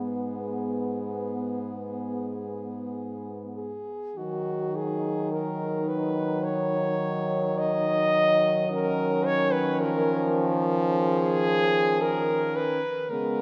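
A clear, up-front French horn sings the melody of this melancholic, solemn classical quartet, cut from a longer piece and played with rubato, over a mellow, distant second horn with light vibrato, a smooth-topped horn in the accompaniment and a soft-attacked, vintage-sounding bass horn, with the music turning to a new section at 4.2 s and the whole quartet heard in the wet, long reverb of a church.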